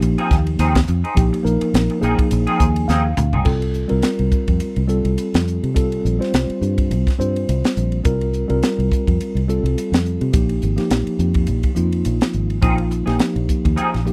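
A swung sixteenth-note groove at 105 BPM in 4/4 drives this slick, soaring electric jazz fusion cut from a longer piece, anchored by a punchy, high-tuned fusion kit and a round, foam-muted fingered bass sitting up front. A mellow tine electric piano comps throughout and adds a fill near 2.3 seconds, and the drums join at 2.9 seconds with a fill that carries the music from Bb9sus4 to C7sus4. A clean, twangy electric guitar with chorus and slapback echo plays stabs, drops out at 3.5 seconds and returns at 12.6 seconds, all in a dry, close 1970s-style studio sound.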